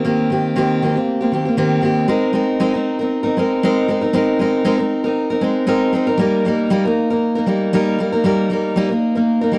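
A dry, close studio sound in a 1970s style puts a lone picked steel-string acoustic guitar up front, its warm, auditorium-like tone carrying audible finger squeak. This carefree, heartfelt pop passage in Ab major moves at 118 BPM in 4/4 with a light sixteenth-note swing, tuned slightly low to A4 = 437 Hz. Taken from a longer piece, it opens on an Eb6 chord before settling at 2.1 seconds into Abadd9 and then Eb/G at 6.2 seconds, the guitar ranging from Eb3 to Bb4.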